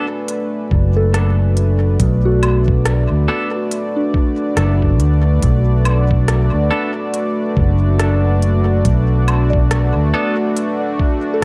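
A light reverb and digital ambience surround this short cut from a longer ambient dub piece, with vinyl crackle sitting audibly over the mix. The mood is meditative and hazy, moving at 70 BPM in 4/4 with a swung sixteenth feel in B dorian, resting on a single Bm7 chord throughout. A smooth analog pad with a slow attack and long release holds sustained chords under chorus, while a bright, clean semi-hollow electric guitar plays compressed stabs soaked in lush chorus and dub echo. An organic electronic drum kit with crisp hats, rim click and woodblock, tape-colored and re-recorded in a large room, enters at 0.3 s with its own dub echo, joined at 0.7 s by a muffled, pitched-down, thumpy electronic kick and a dark, round, punchy fingered electric bass that sits up front in the low register. From 1.0 s a soft, pure FM synth bell traces gentle, decaying arpeggios in the background, colored by chorus, phaser and dub echo.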